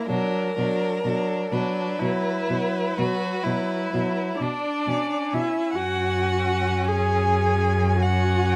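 Swaying in a rubato 12/8, this elegiac fragment of a slow romantic string quartet movement carries a melancholic weight from its first moments. A dark violin sings the melody with soft attacks, vibrato and expressive portamento, while a clear, more distant second violin traces a lower supporting line, the viola adds focused accompaniment up front, and a rich cello anchors the bass from 0.1 s. Close, detailed microphones and light reverb frame the bowed quartet as the harmony shifts from its opening chord to a bare F#5 at 5.8 s.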